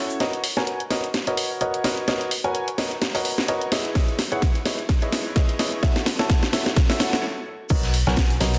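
Joyful and euphoric, this piano house excerpt at 128 BPM in B major opens with a clear, woody, slightly detuned upright piano riff, sidechain-pumped and sent through tape echo under a filter sweep. Alongside it, an up-front house drum kit with a cracking snare, crash, hi-hat and shaker drives a build-up and drum fill as the harmony moves through Bmaj9, C#m9 and A6. A punchy electronic kick arrives at 4.0 s, and after a brief stop the music lands back on Bmaj9 at 7.7 s, where a round, dark FM bass enters alongside a gritty, saturated indie drum kit set in the background.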